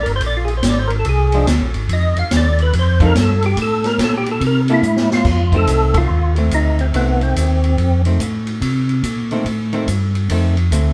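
Soulful and greasy, this soul jazz organ trio swings at 143 BPM in 4/4 in F mixolydian, moving through Bb7, F7 and C6 chords. It opens with a fat, percussive tonewheel organ solo, its key click and third harmonic percussion sitting up front through a slow rotary speaker and chorus vibrato. Beneath it, a second tonewheel organ carries a round, mellow bass line, also treated with chorus vibrato and slow rotary. An acoustic jazz kit with dark cymbals, a high-tuned snare and a boomy kick plays a fill at 4.8 seconds, leading into a new passage where the band hits an accent together. A clean, picked hollow-body archtop guitar enters at 1.3 seconds as accompaniment, and the lead organ drops out at 8.0 seconds while the rest of the group plays on, all in a live room with moderate studio reverb.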